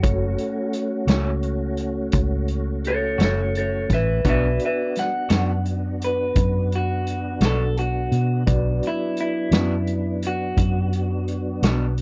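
Slow blues in 12/8 at 57 BPM with a smoky, soulful mood, moving from F#m to Bm at 4.3 s in this excerpt from a longer piece. A bright, twangy, slightly broken-up lead guitar through a small old amp carries the solo up front, over a punchy vintage drum kit in a pumping small room and a dark, round, foam-muted fingered bass. A tonewheel organ holds clear sustained chords through a slow rotary speaker with chorus vibrato, a gritty, barky tine electric piano with medium tremolo sits in the background, and from 1.1 s a lo-fi second guitar adds accompaniment with harmonic tremolo, in a dry recording.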